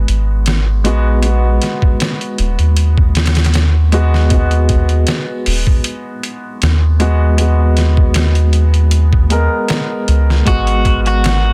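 Trip hop at 78 BPM in 4/4, this melancholic, dark excerpt sits in G# minor on a single G#m7 chord, with a light swing on the sixteenths. A felt-muted upright piano carries the accompaniment throughout, its mellow, intimate tone softened by harmonic tremolo and tape echo, tucked beneath the other parts. Underneath, a soft dub sub bass sits up front, deep and round with a sustained, triangle-and-square-wave character. A gritty, pitched-down sampler-style drum kit plays hi-hat, a thumpy kick and a medium-tuned snare, compressed and placed forward in the mix. At 10.5 seconds an electric guitar at the edge of break-up enters on a single twangy, fingered F#4 with tape echo, just before the cut at 11.5 seconds. Digital ambience surrounds the parts, and the master is dense and heavily limited.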